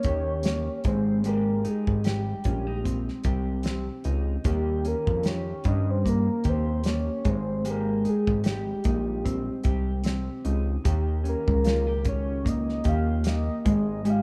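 A fat, detuned sawtooth analog bass sits up front in this nostalgic, dreamy excerpt of indie bedroom pop, moving at 75 BPM in Ab major with a lightly swung 4/4 feel. A cloth-damped acoustic kit with a tight kick and a rolled-off top thuds along in a small room, while a dark, clean, fingered electric guitar with subtle chorus and vibrato carries the accompaniment and a soft, round, octave-layered synth lead with lush chorus sings the melody over a sub octave. The harmony sways between Eb7 and Abmaj7, and the rough home demo mix is bathed in studio reverb.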